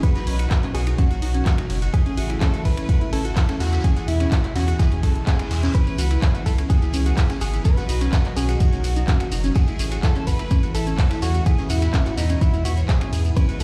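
A straight 4/4 progressive house groove at 126 BPM, driving and expansive, is anchored by an up-front electronic kick, a round analog bass with tube saturation and sidechain pumping entering at 0.3 s, a dark-hatted deep house kit of snaps, claps, hi-hat and ride, and a background brushed vintage kit, while a glassy wavetable pluck arpeggiates with chorus and delay over a mellow sawtooth pad through a B, Amaj7, E, C#m7 progression, a clean direct electric guitar carries the delayed melody joined by a very quiet biting violin section on a second line, and a reverse cymbal at 5.1 s leads into a grainy shekere from 5.7 s, all heard in a bare stone room on a big sound system.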